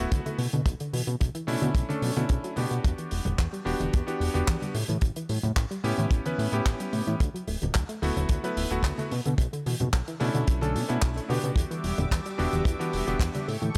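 A bright, cutting electric grand piano with dub echo and a fat, detuned analog bass open this groovy, cosmic nu-disco excerpt at 110 BPM in E dorian, both pumping against a dry, tight kick that sits up front, while a round, chorused analog pluck plays arpeggios in the background, a damped 70s kit adds handclaps and hi-hat, and very quiet low-tuned congas fill in over chords moving from Bm11 through Em7, A7 and D6, before a lush, airy unison pad enters at 11.6 s.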